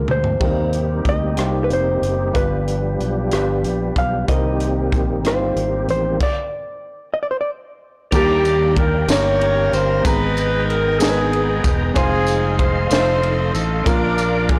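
Slow gospel in 6/8 at 62 BPM in Eb major, jubilant and hopeful, cut from a longer piece and heard through a blown-out, overdriven recording with light reverb. A drum fill opens the passage on a crisp fusion kit with a high-tuned snare, soft-clipped, and a punchy kick in a small, pumping room, while a round fingered electric bass sits up front and a woody upright piano stays in the background. A dark, clean hollow-body jazz guitar carries the melody from the start until 7.5 seconds, over a percussive tonewheel organ holding sustained chords with key click, chorus vibrato and a slow rotary speaker. The band stops from 6.2 to 8.1 seconds, and at 8.1 seconds a smooth saxophone section with light vibrato and slapback echo takes over the melody up front, joined by a jingly, vintage tambourine in the background. In this second section the harmony moves from Ebmaj7 through Abmadd9 and Fm7 to a closing Bb.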